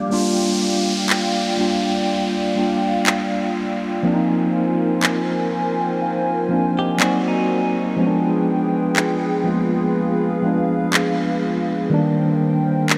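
Contemporary R&B at a slow 61 BPM with a swung sixteenth feel, this romantic, dreamy excerpt floats in a huge ambient reverb. A mellow tine electric piano sits up front over a hollow, flute-like pad with slow attack and chorus, while an electronic downlifter sweeps through the opening and produced handclaps enter at 1.1 seconds. The piano adds a fill from 5.0 seconds, a bright, twangy clean guitar arpeggio with subtle chorus and analog delay glints in the background around 6.8 seconds, and the chords move from Gm7 through Ab9 and G7b9 to a closing Cm7.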